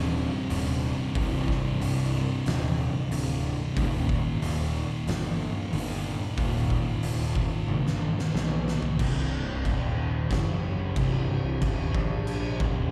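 Ominous and heavy, this stoner and doom metal excerpt is cut from a longer piece and driven by a punchy, overdriven fuzz bass up front, with an oversized low-tuned drum kit whose boomy kick, fat snare and dark cymbals sound gritty and saturated in a pumping room. Two thick fuzz guitars play a dark, distorted riff in the background, one stopping at 9.0 seconds after a drum fill. Beneath them a very quiet, deep rumbling drone sustains warbling, detuned chords from 1.1 seconds, all heard as a live gig through the venue's PA with recital hall reverb.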